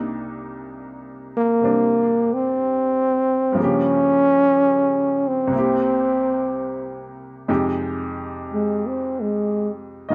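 A breathy, mellow trombone carries the melody up front, with light vibrato and a plate reverb, entering at 1.4 seconds and taking a solo from 7.5 seconds in this smoky, wistful slow jazz piece in C minor at 62 BPM with a swung feel. Beneath it, a bright upright piano with a woody, intimate tone and audible action noise plays the accompaniment through changes from Cm7 to Gm7b5, C7 and Fm9, all within a light room reverb.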